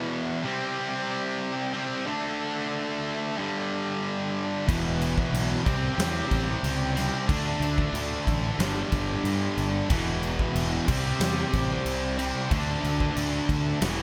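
Aggressive and menacing, this 92 BPM hard rock excerpt opens with a bright, up-front distorted guitar riff over a very quiet, gritty tonewheel organ holding sustained chords with key click and vibrato; at 4.7 s a punchy arena drum kit with gated reverb, a growly fuzz-driven fingered bass and a second crunchy, chorused guitar in the background join the cycle of C5 (later a full C), D5, G5 and E5 chords, set in a bright 1980s-style digital production with light studio reverb.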